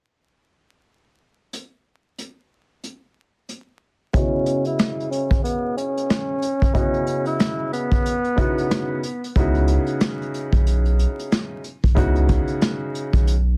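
A vintage brush drum kit opens this moody, reflective boom-bap hip-hop excerpt, its punchy kick, medium-tuned snare, rim click and hi-hat swinging with a rolled-off top in a small acoustic room. At 4.1 seconds a dark, woody upright piano with a cassette-tape patina settles onto a C#m11 chord while a breathy tenor saxophone plays a short jazz-style solo with scooped notes and light vibrato, and a filter sweep runs through to the end. The saxophone stops at 9.3 seconds, and a thick, saturated sub bass arrives at 9.4 seconds beneath a dense, heavily limited master dusted with vinyl crackle and little reverb.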